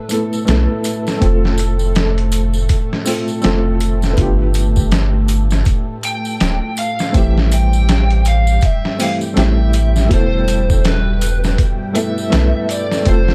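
A dry, close-sounding cut from a longer cinematic, smoky trip hop piece, where a gritty, thumpy sampler-style drum kit with a saturated tambourine sits over a deep, round dub sub bass, a muted felt piano with tremolo and tape echo, and dark, warbling string-machine cellos, joined from 6.1 seconds by an overdriven slide guitar carrying the melody.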